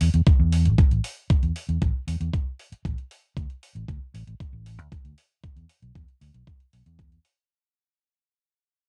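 A fingered electric bass and an electronic hi-hat open this sunny, feel-good nu-disco excerpt together, with the electronic kick drum joining at 0.3 seconds on a straight 116 BPM pulse in 4/4. The bass sits up front with a dark, round, amped tone, moving between A1 and E2 and breathing with sidechain pumping. The kick is also forward in the mix, a gritty, thumpy, sampler-style hit that is compressed and kept at its natural pitch. Further back, the layered hi-hat adds metallic, tape-warm shimmer. The whole short passage is cut from a longer piece, stays on one section with a fade-out running across its length, and carries the intimate, dry character of a home cassette recording tuned to A4 = 439 Hz.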